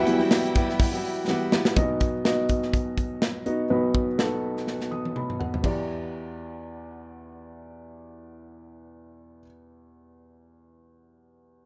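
A rough home-demo mix with light reverb and small-room ambience frames this dramatic, driving piano-led pop fragment in E minor at 124 BPM, its swung sixteenths moving from Emadd9 through B to Em7. A dark, woody upright piano with audible action noise and long sustain carries the accompaniment up front until 11.7 seconds, while a picked dreadnought steel-string guitar riff and a bright, lush, distant violin section with vibrato sound only at the opening, the violins ending at 1.7 seconds. An acoustic drum kit with a tight kick and medium-tuned snare drives the groove up to 5.8 seconds, adding two fills, the second alongside a piano fill, before it stops.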